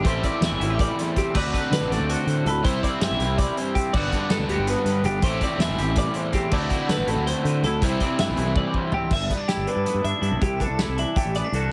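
This math rock and Midwest emo excerpt opens with everything at once: a twangy clean guitar picking out chords through a lush chorus, a bright twelve-string electric guitar picking shimmering arpeggios above it, a double-tracked overdriven semi-hollow guitar driving a riff, and a growly fuzz bass pushing underneath. The mood is bright and wistful, moving at a quick 324 BPM counted in eighths and set in an odd 7/8 metre with a straight feel in G major. A loose indie drum kit sits up front yet sounds distant and roomy, with dark cymbals, a medium-tuned snare and a tight kick, and it rolls through a fill from 8.6 to 9.1 seconds. At that point the semi-hollow riff drops out and the harmony settles from a cycle of Am7, D6 (later D13), Cmaj7 and Gmaj9 onto G6 and C69. The mix is dry and heavily compressed, giving it a dense, radio-ready punch.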